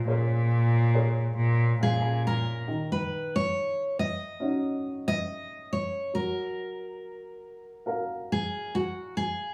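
An intimate, heartbroken acoustic folk-pop ballad in Eb minor at 69 BPM, cut from a longer piece, where a woody, open upright piano with short sustain accompanies throughout, a reedy, gut-string bowed cello with light vibrato sounds a low Bb2 bass note until 2.6 s, and from 1.8 s a full-bodied picked jumbo steel-string guitar carries the melody up front over Bbm7, Ebm7 and Gbmaj7 chords, all played live together in a small room with a wet studio reverb.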